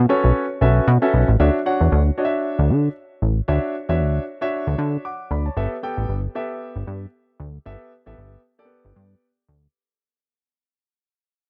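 A punchy, plucky analog bass opens this danceable, slick slice of early-eighties boogie funk at 115 BPM, its sawtooth and square-wave tone given a filter pluck, a fast attack and decaying notes that sit up front over a swung sixteenth-note feel. A warm concert grand piano joins at 0.1 seconds as accompaniment, its deep low end and short sustain also close in the mix, moving from B9sus4 to Dmaj9 and then G69. The dark studio production gradually fades out from 1.4 seconds until the bass stops at 9.7 seconds, the cut coming from a longer piece.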